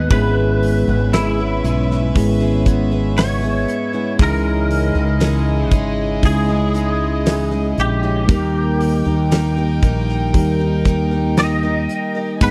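This dry, close recording has a 1970s studio sound and little reverb, and it is a short section cut from a longer piece. It is a longing, melancholic pop ballad in a straight 4/4 at 58 BPM, moving through E6/G#, C#madd9 and D#. A huge arena drum kit sits up front from 0.1 s, with a punchy kick, a fat snare and hi-hat, beside a dark, round fretless electric bass that is also placed up front. A bell-like tine electric piano plays the accompaniment, and a picked steel-string acoustic guitar adds arpeggios in the background. The melody comes from a bright, twangy, scooped clean electric guitar, recorded direct, compressed and thickened with ensemble chorus. A warm studio violin section carries a second line with a reedy, gut-string tone and light vibrato in a period style.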